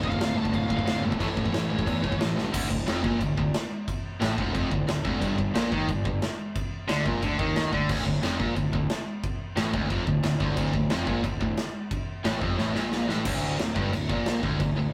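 Heavy metal in D minor at 179 BPM, this dark, heavy excerpt cut from a longer piece rides a straight 4/4 pulse through a rough rehearsal-room sound with a short, wet booth ambience. A dark, distorted high-gain lead guitar sings a brief melody between C#5 and A5, stopping at 2.2 seconds, while a bright, up-front heavy guitar drives the low riff alongside two very quiet companions: a high-gain distorted guitar and a double-tracked overdriven one, all picked between D2 and A3. Underneath, a fuzz-laden picked electric bass with a round, punchy, overdriven tone anchors the low end from D1 to E2. An acoustic rock kit sits up front with a punchy kick, medium-tuned snare, and bright crash and china cymbals, throwing fills at 2.4 seconds and from 12.6 to 13.3 seconds. The harmony moves from D minor and A through G5 back to D minor, landing on a D5 power chord at 13.3 seconds as a new section begins.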